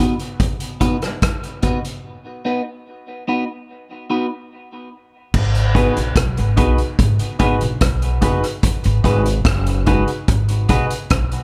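Dub reggae with a deep, heavy mood, this cut opens on a break of picked, clean electric guitar with phaser and dub echo over a vintage drum kit with a punchy kick and rolled-off top in a small, pumping room, pauses at 4.5 seconds, then brings in growly, woody pizzicato upright bass at 5.3 seconds and, soon after, mellow dub-echoed stabs from a dark baby grand piano, with a filter sweep from 8.6 seconds to the end.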